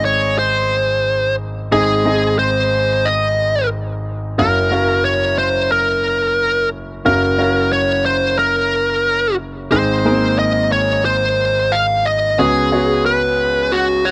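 Pop in Gb lydian at 90 BPM in a straight 4/4, nostalgic and glossy, with a bright, picked overdriven electric lead guitar carrying the melody up front from Gb4 to F5. A clear concert grand piano with deep bass and an open tone accompanies it throughout the 14.1 seconds, moving through Ab, Gbmaj7, Ab and Db7sus4. The dry, close sound recalls a 1970s studio, and the passage is cut from a longer piece.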